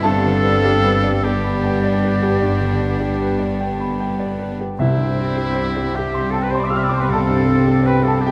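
An up-front, natural baby grand piano carries the melody through this passionate, lush classical excerpt in C major, moving in a rubato 12/8 at 48-54 BPM, shadowed by a sul tasto chamber violin section on the tune, while a clear oboe, bright clarinet, distant silver flute and very quiet studio violin section weave second lines, supported by a pure, floating viola section, mellow French horn chords, woody double basses and an intimate cello section, with round, soft-mallet timpani sounding from 4.8 s to 5.9 s as the harmony settles from G to C, all set in a moderate scoring-stage reverb.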